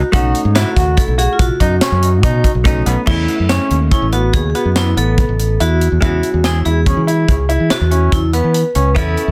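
A dense, heavily limited modern mix with light reverb carries this bright, intricate progressive instrumental in 7/4 at 143 BPM, set in E major and tuned to A4 = 435 Hz. A tight funk drum kit with a high-tuned snare, hi-hat, crash and tight kick sits up front beside a punchy fingered electric bass. A clear concert grand piano, with audible action noise and long sustain, plays arpeggios through tape echo, and a hard-mallet vibraphone carries a metallic second line with motor vibrato. In the background, a dark, clean hollow-body jazz guitar accompanies over B7, moving to B9sus4 at 3.1 seconds and E6 at 6.0 seconds.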